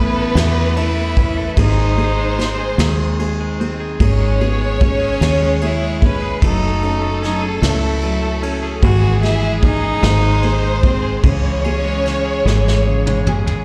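Six-eight pop ballad at a slow 50 BPM, aching and melancholic, where an intimate sul tasto cello carries the melody with airy bow and slapback echo over a lush, distant violin section, a woody upright piano with audible action noise, twangy compressed twelve-string electric guitar arpeggios, a punchy foam-muted fingered bass up front, and a roomy brush kit entering at 0.4 s that closes on a drum fill from 12.5 s, all heard through a live venue's PA in recital hall reverb, cut from a longer piece.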